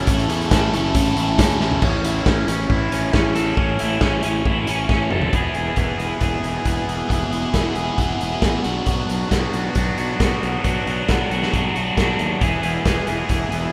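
Indie rock at 136 BPM in E mixolydian, this short, upbeat and jangly cut from a longer piece moves at a straight, driving pace with a rough home demo feel. A crunchy overdriven guitar carries the riff from start to finish, picked and double-tracked up front with a phaser colouring its bright edge. Underneath, a fuzz fingered electric bass growls through overdrive, sitting low and direct beneath the riff. The raw garage drum kit, up front in a stone room, pairs a punchy kick with a medium-tuned snare, hi-hat, crash and toms, its rolled-off top giving it a dark, smooth character. Drum fills arrive at 1.6 seconds and again just before 5.3 seconds, where the chords shift from A to E and later pass through Bm before settling back on E, all wrapped in a light studio reverb.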